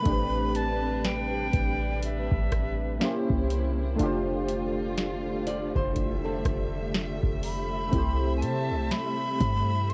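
A breathy, bright silver concert flute sings a longing melody over chorused analog keys, lush dark bowed strings, fingerpicked nylon-string guitar arpeggios that stop at 7.7 s, a deep, boomy 808-style bass and a booming analog drum machine with crisp snare and metallic hats, all in a moody, slow 61 BPM contemporary R&B excerpt with a swung sixteenth feel, dry and tape-worn like a home cassette recording, moving through Am11, C7b9, F69 and C6.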